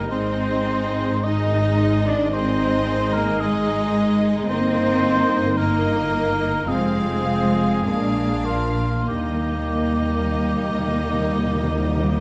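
A slow, rubato 4/4 pulse of 45-56 BPM carries this lyrical, tender classical passage in Eb major, cut from a longer piece, where a smooth, vibrato-rich first violin section sings the melody over a mellow, distant cor anglais and a focused second violin line, while an intense viola section, soft-attack French horns holding sustained chords, an even cello section and an up-front, expressive double bass section fill out the lush harmony moving from Ab through Eb/G, Fm and Bb7 to Eb, before close, dry timpani add a fill on Eb from 9.1 seconds, all set in a moderate recital-hall reverb.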